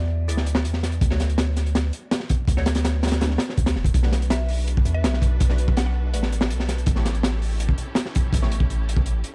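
A short cut from a longer drum and bass and jungle piece opens with a deep, sine-toned 808-style bass and a brief woody, round mallet-like synth pluck, set in a dark, nostalgic mood at 164 BPM in B minor. From 0.3 seconds a crunchy breakbeat kit takes hold up front, its punchy kick and high-tuned snare saturated and gritty with a rolled-off top, while a muted, detuned sawtooth dub chord stab sits in the background, treated with phaser, subtle chorus and dub echo. The pluck returns at 4.3 seconds, carrying vintage 12-bit sampler grit, chorus and dub echo as it plays its melody between D5 and F#5. A lush bowed string section enters at 3.9 seconds with expressive vibrato and portamento, holding sustained chords over a progression moving from E7(no3) through Dmaj7 and Bm7 to A7. The small room ambience and vinyl crackle give the production a dark, warm character.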